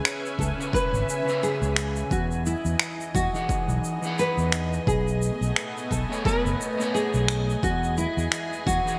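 Sunny and smooth, this short excerpt of sunset chillout moves at 87 BPM in 4/4 with a gentle 16th-note swing, settling in E major over a progression of C#m7, Emaj9, B13 and back to Emaj9. A dark, full-bodied nylon-string guitar carries the melody up front, fingerpicked in a classical manner and coloured by analog chorus, digital delay and shimmer reverb. Beneath it, a lush, thick unison pad of detuned sawtooth and square waves with a sub octave holds sustained chords through chorus and phaser, while a glassy texture of drifting sine overtones sits calmly in the background from 0.3 seconds. Finger snaps and shaker arrive almost at once, up front with gated reverb, and at 0.4 seconds a round, amped fretless bass joins alongside a punchy, layered electronic kick with overdrive. From 0.6 seconds a slightly broken-up electric guitar adds fingered accompaniment through delay and shimmer reverb, all set in a moderate hall reverb with bright 1980s-style digital production.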